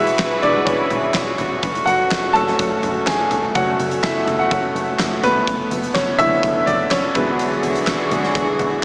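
A clear, polished baby grand piano leads up front in this anthemic piano-driven pop excerpt at 125 BPM in straight 4/4, moving through Eadd9, F#m, Bm7/F# and E7 over reedy, gut-string studio strings holding bowed sustained chords, a plucky analog bass with a fast, decaying filter pluck sitting in the background, and a huge arena drum kit with a punchy kick, fat snare, hi-hat, toms and handclaps, set in a dreamy, small-speaker mix soaked in long ambient reverb.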